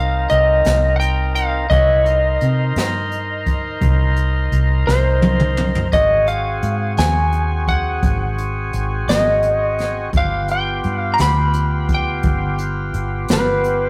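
A slightly broken-up electric slide guitar carries the melody in this soulful, smoky slow blues, its fingered, compressed tone sitting high above the band. Beneath it, an overdriven tonewheel organ holds thick, gritty sustained chords through a slow rotary speaker, moving from Cm7 to Ab7 at 5.9 seconds and G7 at 10.1 seconds. A vintage fingered electric bass sits up front with a dark, foam-muted, round and punchy sound. The brush drum kit comes in at 0.3 seconds with hi-hat, a boomy kick, a high-tuned snare and toms, and plays a fill from 4.9 to 5.9 seconds. The straight 12/8 feel comes through a rough rehearsal-room recording with tube saturation and a moderate stone-room reverb, and the passage is cut from a longer piece.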